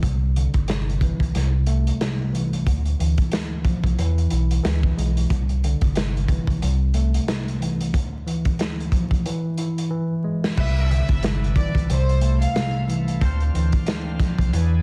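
A worn, slightly out-of-tune tine electric piano opens this confident, soulful boom-bap hip-hop excerpt in C major, laying down jazzy chords over a deep, full sine sub bass and a crunchy breakbeat kit at 91 BPM with a swung sixteenth-note feel. The kit sits up front with a gritty, saturated character: a punchy kick, a medium-tuned snare, dark cymbals and a rolled-off top, all set in a small room. The bass is just as forward, with a fast attack and sustained notes. The harmony moves through Cmaj9, C6, Dm9 and E7, and a break arrives at 7.9 seconds, capped by a drum fill just before the second section. At 10.6 seconds, a bowed violin section floats in with a soft, pure sul tasto melody touched by tape echo, ending at 12.7 seconds. Beneath it, a bright, shouting tonewheel organ sustains lightly overdriven chords with key click and a slow rotary speaker, while a vintage jazz-style horn section adds octave-doubled stabs in the background, all over a dense, heavily limited master dusted with vinyl crackle.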